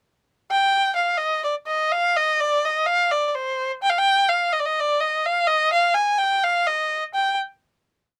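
A solo erhu opens at 0.5 seconds, bowed by one player close up and up front, spinning a smooth, even melody in Eb major in free time, built from catchy hook phrases with singing vibrato and gliding portamento between C5 and Ab5. The mood is exuberant and virtuosic, with a Balkan folk flavour, and the recording is dry and detailed. The erhu's line ends at 7.4 seconds, and the final note carries the piece to a close at 8.2 seconds.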